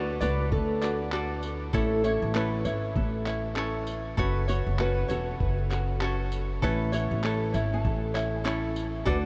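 A dreamy, reverb-soaked sound surrounds this brief, easy-going acoustic pop clip in A major, moving at 98 BPM with a gentle sixteenth-note swing over chords of D, A, F#m and A. Up front, a bright fingerpicked ukulele carries the accompaniment and a woody pizzicato upright bass holds down the low end, while a lo-fi, sampler-style kit enters at 0.2 seconds with muffled, pitched-down handclaps, tambourine and a thumpy kick. A boxy flamenco guitar, fingerpicked with audible finger squeak, plays the carefree melody through analog chorus and a diffuse ambient delay.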